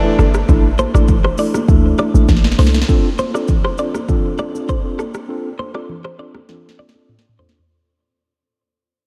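Light reverb and a digital ambience frame this short, sultry afrobeats cut, which moves with a straight, hypnotic feel from a suspended opening chord into a minor seventh. A mellow tine electric piano carries the accompaniment throughout, clean and heard as if through built-in speakers, while a bright, twangy electric guitar, recorded direct and compressed, picks a high riff touched with subtle chorus and tape echo. Up front, an electronic afro-pop kit sets a deep kick against a sharp snare, smooth hats, rim click, shaker and toms, with a tape-warm, produced sheen, and ringing, high-tuned congas sit softly in the background. A punchy, tight 808-style bass with a sine tone, a noise layer and a fast, decaying attack anchors only the opening, stopping at 2.8 seconds in the middle of a drum fill. From 2.9 seconds the music fades out over the second section, and a final drum fill arrives at 6.5 seconds as the excerpt closes.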